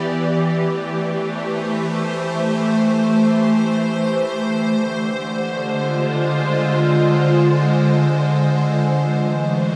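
Reflective and melancholic, this free-time ambient excerpt features a solo evolving wavetable pad, bright and up front with a morphing sine tone, slow attack and long release, spanning D3 to D5 with ensemble chorus, built-in reverb and delay, drifting from C6 to Fm6 at 4.4 seconds and Am7 at 8.8 seconds inside a wet cathedral reverb that places it in a vast, echoing space.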